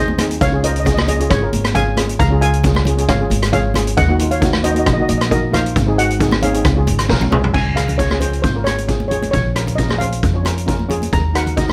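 A light reverb gives this short calypso excerpt a touch of space, with the drum kit sitting up front and the congas in the background. The mood is festive and bouncy, in a straight 4/4 feel. A lead steel pan, played with soft rubber sticks, carries the melody in a mellow, dark, shimmering tone. A second pan of the double-seconds type fills in the accompaniment with a vintage, band-limited character. Underneath, a pizzicato upright bass with steel strings gives a woody foundation, while high-tuned congas with hard hands add bright, thin-skinned accents from a live room. The street-band drum kit, with its boomy kick, medium-tuned snare and rolled-off top, plays a fill from 7.1 to 7.5 seconds that leads into a new section moving from Db through Bbm7 to Ebm.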